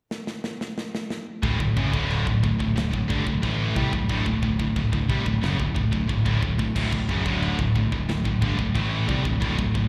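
An up-front, slapback-echoed high-gain guitar riff leads this epic, heavy metal excerpt, backed by two more distorted guitars (one very quiet and double-tracked) and a growly picked electric bass, which all come in on a D chord at 1.4 seconds after a tight acoustic drum kit opens with a fill of bright china and crash cymbals, snare and kick, the whole band heard as a live gig through the venue's PA.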